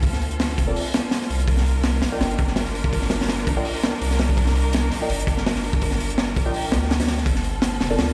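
A crunchy, gritty breakbeat kit with a punchy kick and medium-tuned snare drives this frenetic yet atmospheric drum and bass and jungle excerpt at 166 BPM with a light swing, while a thick, tube-saturated sine sub bass sits up front beneath rich, bowed studio strings holding sustained vibrato chords, and from 0.7 s a deep, nasal chord stab with chorus and dub echo colours the shift from Gm11 to Cm11, the mix carrying a large studio reverb as if played on a big sound system in a bare room.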